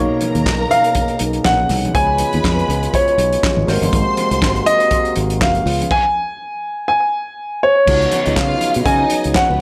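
Disco with a glamorous, sultry mood at 121 BPM in 4/4, this short excerpt has a light 16th-note swing and moves from Bmaj9 through C#7 and G#9, with a stop from 5.9 to 7.9 s before a new section opens on C#9sus4. An intimate, up-front grand piano with audible action noise and slapback echo carries the melody from 0.7 s, over lush bowed strings with expressive vibrato, a mellow, tight French horn section holding chords, and a worn, barky, slightly out-of-tune tine electric piano with lush chorus sitting in the background. Underneath, a punchy fingered electric bass and a gritty, saturated soul drum kit with a fat snare, tight kick, dark cymbals and handclaps drive the groove, while very quiet, distant congas ring softly in a large room, all within light reverb.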